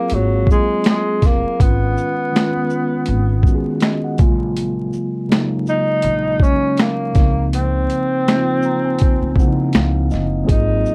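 Mellow and dreamy, this lo-fi hip hop excerpt in Db major moves at 81 BPM with a swung 16th-note feel, cut from a longer piece and dusted with vinyl crackle in a small, moderately reverberant room. A breathy, whispered tenor saxophone carries the melody up front with subtone, vibrato and scooped notes, while a clean tine electric piano lays down lush chords from Ab13 through Gbmaj9/Bb to Dbmaj13, both parts filtered low. Underneath, a woody, growly pizzicato upright bass pairs with a gritty, pitched-down boom bap kit of thumpy kick, high-tuned snare, hi-hat, shaker and finger snaps.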